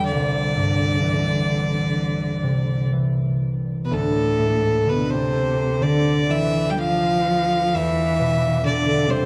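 A wet cathedral reverb with a 4.7-second decay surrounds this dark, haunting, longing Celtic slow air, cut from a longer piece and moving in a free, rubato 4/4 at roughly 58 to 68 BPM in D dorian. A single bowed fiddle carries the melody up front, its clear, earthy tone touched with light vibrato yet set at a distant remove in the space. Beneath it, one bowed cello sings a second line in a rich, expressive voice, shaded with vibrato and portamento. A concert harp, fingerpicked and mellow, rings out up front as the accompaniment, sitting slightly louder than the bowed strings. The three parts play together throughout the 9.3 seconds, with the harmony moving from Cadd9 to Dm at 3.9 seconds, where a second section begins, and on to E7(no3) at 7.7 seconds.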